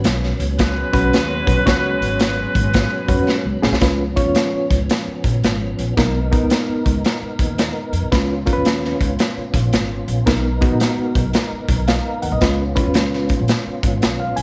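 This uplifting, joyful slice of uptempo 1960s-style soul rides on a gritty, up-front garage drum kit, its punchy kick and pumping small-room sound driving a swung 112 BPM groove in Db mixolydian. A reedy electric piano with light overdrive and tremolo, a mellow, round tonewheel organ spinning through a fast rotary speaker, and a woody pizzicato upright bass hold the harmony throughout, while a vintage horn section with light vibrato plays a tight second line from 0.6 to 3.6 seconds. A drum fill at 3.3 seconds leads out of the opening Db7sus4 into a passage alternating Db7 and Cbmaj7.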